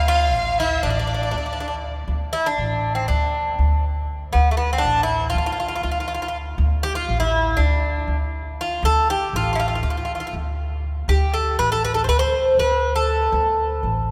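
This Turkish excerpt in makam huseyni on D moves at 240 BPM in eighths through a straight 9/8, with a longing, hypnotic mood. Up front, a picked Greek bouzouki carries the melody, its double strings, some doubled at the octave, giving a metallic, acoustic ring. In the background, a rich solo violin and a clear, focused studio violin section add a bowed second line with vibrato, the solo smooth and even, before both stop at 1.8 seconds. An upright bass, also up front, plays pizzicato on steel strings with a woody, dark tone, holding the low end through to 14.1 seconds. The whole performance sits in a wet cathedral reverb with a long 4.8-second tail, recorded in a church or concert hall, so the short opening passage opens into a longer stretch that drifts in a spacious, resonant haze.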